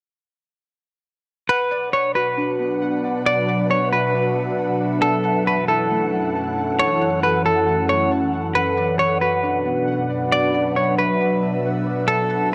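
Dry, gritty hardware sound with light digital ambience frames this spacious, melancholic half-time hip hop excerpt in B minor at 136 BPM, where a clean, hollow-body electric guitar carries an up-front melody through tape echo from 1.5 s, warbling lo-fi synth keys play nostalgic arpeggios with chorus and phaser, an ethereal, bright detuned pad holds sustained chords from 2.0 s, and a very quiet, breathy wind-like noise layer drifts beneath over Bm and F#m7.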